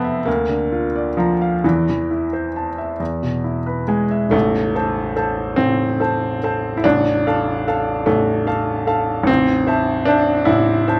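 A clear, intimate baby grand piano, up front with audible action noise and long sustain, carries this passionate, lyrical romantic character piece in a rubato 6/8, its chords moving from Bb/D through Am/E and E before settling over Am and Dm/A in a second section from 4.3 seconds, all in a natural sound with light reverb, cut from a longer piece.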